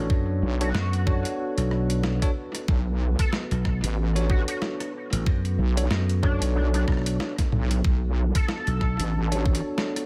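Playful and gritty, this glitch hop excerpt rides a swung 4/4 groove built on a knocking, up-front electronic kick and a pitched-down, tape-warm boom bap sampler kit of hi-hat, rim click, snare and toms, with a drum fill at 7.4 seconds. A growly vintage slap bass and a heavy, detuned wobble bass share the low end, while a bell-like tine electric piano stabs through tape echo and sidechain pumping over a moody analog pad holding sustained chords in the background. An edgy sync lead with a tearing tone, vibrato and ensemble chorus carries the melody from 0.6 seconds, all set in a dry, echo-heavy mix.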